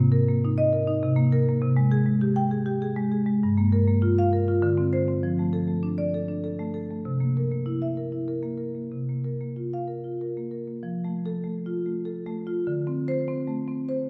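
In a straight 3/4 at 99 BPM, this brief contemporary classical piece for solo marimba sways with a warm, playful mood. The marimba, played with medium mallets, has a dark, smooth tone and sits up front, ranging from G2 to G5. The harmony opens in Ab major on a Cm7 and suspended and major-seventh colours, then moves to F major from 3.4 seconds through Gm7, F6 and C7 chords. A new passage begins at 10.8 seconds, settling on an F chord before ending on a bare D5. Lush recital-hall reverb surrounds the instrument, and the room is heard from further back, giving the sound a spacious, resonant glow in this fragment taken from a longer work.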